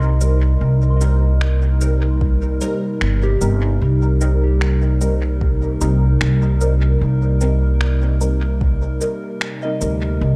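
Up front, a woody, thumpy pizzicato upright bass anchors this deep, spacious ambient dub excerpt at 75 BPM in C minor with a swung sixteenth feel, alongside a warbling, nostalgic tape-like pad holding a Cm7 chord, muted phaser-treated chord stabs with dub echo, a soft FM synth bell drifting in the background through a filter sweep and tape echo, electronic cabasa and finger snaps echoing into the distance, a deep electronic kick from 2.2 to 8.8 seconds, and a barely audible bubbling stepped-filter texture surfacing at 10.2 seconds, all set in an echo-heavy digital ambience.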